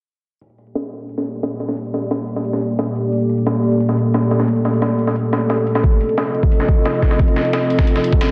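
A deep, detuned analog pad with wave-folded square and sawtooth tones, chorus and sidechain pumping sits up front from 1.3 s, holding dark sustained chords from Gmadd9 to F7 under a filter sweep in this aggressive, futuristic dark technical drum and bass cut in G minor at 177 BPM. A gritty, pitched-up breakbeat kit with a high-tuned snare and filtered hats drives from 0.4 s alongside a very quiet, bright electronic hi-hat, and an overdriven, knocking electronic kick joins them up front at 5.8 s. Moderate room reverb and a dense, heavily limited master give the sound a compressed, modern sheen.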